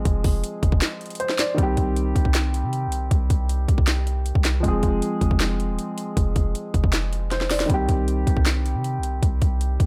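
Hip hop trap with a menacing, eerie half-time feel, where a low-passed baby grand piano with long sustain sits under a deep, boomy 808-style sine bass and an up-front trap kit of hard-clipped kicks, sharp snares, handclaps and metallic hats, all kept dry; the kick drops out from 0.8 to 1.6 seconds and a drum fill lands at 7.3 seconds.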